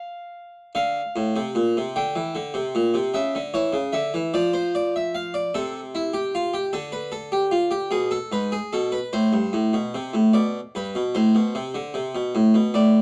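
Classical in a baroque style, this short two-part invention for solo harpsichord moves in 6/8 at 50 dotted-quarter beats per minute, cut from a longer piece and set in D minor. The mood is driving yet contemplative, with a straight feel that keeps the lines steady. The harpsichord, a Flemish-style instrument with two sets of strings, sounds plucked, full and mid-forward, placed up front and spanning G2 to G5. Harmonies pass from D minor through half-diminished and minor colours such as C#m and G#m before settling on A minor. At 10.3 seconds a new section turns toward G and an A minor chord with an added ninth. Light reverb and a dark, warm production give the instrument a gentle glow.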